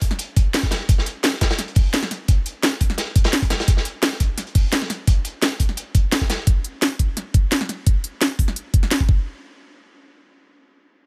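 A knocking electronic kick drum sits up front in this melancholic, lush drum and bass excerpt. Beside it, a layered electronic kit with a cracking snare and crisp hats drives the straight groove, and a saturated, gritty acoustic breakbeat kit with a medium-tuned snare and a rolled-off, high-pass-filtered top sits further back until 6.5 seconds. The dry drop runs to 9.3 seconds, where the kit and kick fall away just before a brief closing section.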